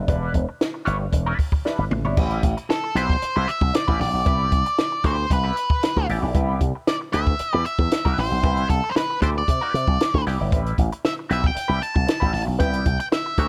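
Hypnotic, driving funk cut from a longer piece, with a punchy, up-front slap bass through an envelope filter and a dry cocktail drum kit with dark cymbals and a high-tuned snare setting the groove, a clean, compressed semi-hollow guitar with wah adding bright accompaniment, and a fuzzed, dark octave-fuzz lead guitar taking the melody from 2.7 seconds after a drum fill at 1.6 seconds, all moving from Em7 into Am9 and Cmaj7 in a small room.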